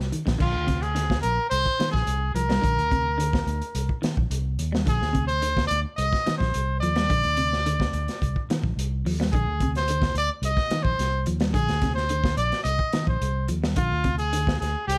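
An afrobeat groove, funky and hypnotic and cut from a longer piece, moves between Bb and Cm chords with brief chordless gaps. A crunchy breakbeat kit with a saturated, gritty small-room sound and dark cymbals plays alongside a round, amped fingered bass, while a clean electric guitar picks arpeggios with spring reverb in the background. From 0.4 seconds a punchy solo trumpet with vibrato carries the melody up front, all set in a lightly reverberant space.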